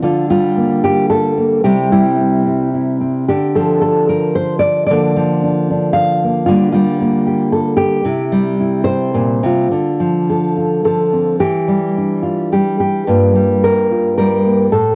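Haunting and wistful, this short folk excerpt, cut from a longer piece, features a solo nylon-string guitar played fingerstyle in a loose, rubato three-time. The guitar sits up front with a classical, thumb-plucked touch, ranging from G2 up to F5 across its 14.9 seconds. Its tone is warm, with a cassette-tape character that lends the home recording an intimate, worn quality. The harmony drifts through chords like Gm7/D, C, Dm and Bb/D in the opening passage, then shifts at 9.7 seconds into a second section moving through Dm7, Em7 and Gm7. Light reverb and a small room ambience frame the playing, keeping the sound close and unadorned.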